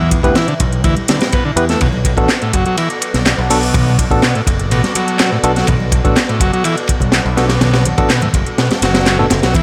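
Breakbeat with a gritty, funky mood, this short cut from a longer piece moves at 124 BPM in a straight 4/4, built on a move from Em to Bm7. A crunchy breakbeat kit sits up front with a punchy kick, high-tuned snare, dark cymbals and a saturated, rolled-off top, layered with an electronic house kit adding handclaps and metallic hats. A punchy picked electric bass anchors the low end, while an overdriven combo organ plays a buzzy, vintage riff treated with digital delay. A bright, barky tine electric piano fires clean stabs through a combo amp from the background, also echoed by digital delay, and very quiet, close congas with a thick skin join at 1.0 seconds. Behind it all, a swirling, detuned sawtooth pad holds sustained chords with a slow attack, colored by phaser, chorus, 12-bit sampler grit and sidechain pumping, and the mix is set in light small-room reverb.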